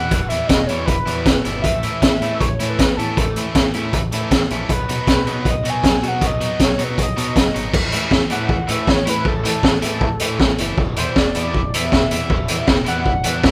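A screaming, guitar-like sawtooth synth lead with distortion and chorus carries the melody and takes a solo from 7.7 s in this wistful, jangly indie rock excerpt, riding over a bright, crunchy picked guitar riff, a very quiet cranked stack guitar, a growling overdriven fingered bass tucked in the background, and an up-front, gritty garage drum kit with a high-tuned snare and punchy kick, in a dry, rough home-demo mix.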